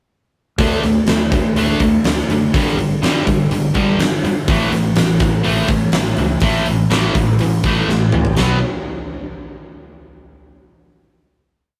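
Quiet-loud alternative rock in B minor at 123 BPM, this short, cathartic and angsty piece is a pre-chorus that drives through D5, G5 and A5 before landing on a final B5 chord at 8.4 seconds. Up front, a bright, overdriven, double-tracked electric guitar chugs palm-muted eighth notes, while a growling fingered bass sits in the background with driving eighth notes. A huge arena drum kit with a fat snare and punchy kick lays down a big rock groove and breaks into a fill at 7.9 seconds, all captured in a rough rehearsal-room sound with moderate reverb.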